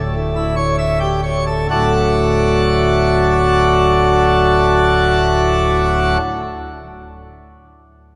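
A full, brilliant pipe organ plenum with chiffing mixtures and baroque voicing opens this majestic, jubilant fragment of a classical toccata, sounding solo and up front from deep bass to a bright treble, slowing down over its first 1.7 seconds before its chords settle and ring on until 6.2 seconds in a long, wet church reverb.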